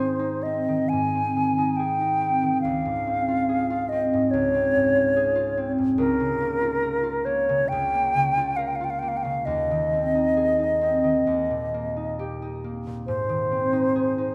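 Warm and lyrical, this fragment of a romantic classical duo moves in a flexible rubato 4/4 at 60-73 BPM in A-flat major. A mellow silver concert flute carries the melody with a pure tone, vibrato and a crisp attack, while a concert harp supplies ringing, fingerpicked accompaniment spanning the low register up to Bb4; both sit up front throughout the 14.3 seconds. A wet scoring-stage reverb lends the pair a spacious glow as the harmony travels through Dbmaj7 and Bbm/Db before settling back on Ab at 13.1 seconds.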